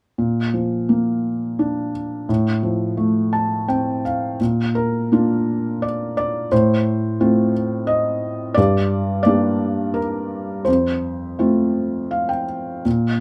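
Relaxed and hopeful, this lyrical classical excerpt features a felt-muted upright piano alone, unfolding in a gentle, rubato three-beat lilt. The piano sits up front with a soft, mellow, intimate tone, its action noise clearly audible beneath a light reverb. Short fills appear around 3.0 and 11.8 seconds as the harmony settles from Bb toward a closing F chord.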